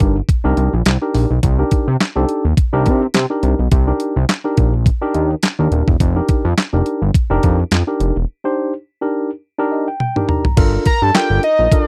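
Early-eighties boogie funk at 105 BPM in C dorian, with a late-night, danceable mood and a lightly swung sixteenth feel, captured dry and close in a 1970s-style studio. A worn, slightly out-of-tune tine electric piano carries the Cm9 and suspended F chords. Beneath it, a thick, wave-folded sawtooth bass with a filter sweep holds the low end, while an overdriven, detuned 8-bit drum machine with a thumpy kick sounds snare, hi-hat, handclaps, toms and crash. After a break from 8.3 seconds with piano and drum fills, a nasal, chorused analog lead with vibrato and a sub octave enters at 10.9 seconds, just after the harmony moves to Gm7.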